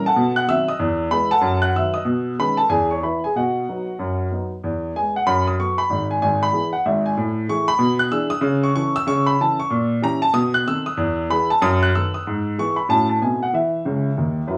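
A worn, present baby grand sits up front in a small room with moderate reverb, playing playful, exuberant solo stride jazz in E major at a swinging 188 BPM, its long sustain ringing across a range from G#1 to F#6 through chords such as B7b9, A#dim7 and C#madd9 before a closing fill at 13.8 seconds in this short cut from a longer piece.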